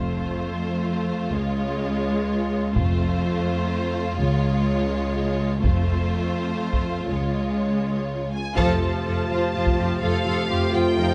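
Majestic and adventurous, this 11.1-second cut from a longer epic orchestral film score moves in a stately 6/8 at 83 BPM, as lush bowed strings build over alternating F and Db chords: a distant, vibrato-rich violin section carries the melody above a soft-attack second violin line, expressive viola accompaniment with portamento, up-front cellos and deep double basses, while a close, dry taiko ensemble struck with hard sticks enters at 2.8 seconds to drive the build-up and plays on past a band accent at 8.6 seconds that brings in a tight, close-miked French horn section and background trombones holding mellow sustained chords, all captured with detailed microphones and light reverb.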